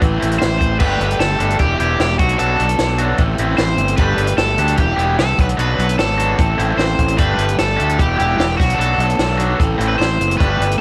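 This short cut from a longer indie rock piece has the dry sound of a home recording made on cassette, with little reverb around the instruments. At 150 BPM in a straight 4/4, the mood is upbeat and carefree, cycling through Am, Gsus2, Em and Bm7 chords. A hollow-body, overdriven semi-hollow guitar carries the picked melody between F#4 and C5, while a raw garage guitar plays a riff colored by lush chorus and tape echo with a cassette-tape grit. A second overdriven electric guitar, compressed and bright, joins at 0.2 seconds with its own picked riff in the middle register. Underneath, a fuzz fingered electric bass sits up front, its warm, overdriven tone anchoring the low end. A compact cocktail drum kit keeps time with a tight kick, a high-tuned snare, hi-hat and dark crash cymbals, all sounding natural and unadorned.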